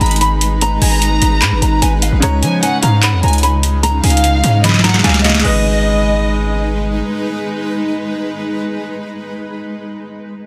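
Eerie and hard-hitting, this half-time trap excerpt pairs a dark fingerpicked flamenco guitar melody, joined by a lush bowed violin section as a second line through digital delay, with brilliant grand piano, a blurred granular pad, a heavy distorted 808 bass and a booming tape-warm drum machine of crisp snare, handclaps, metallic hi-hats and crash, whose fill at 4.6 seconds leads into a dense, heavily limited close where piano and pad ring on after the drums drop out at 5.5 seconds.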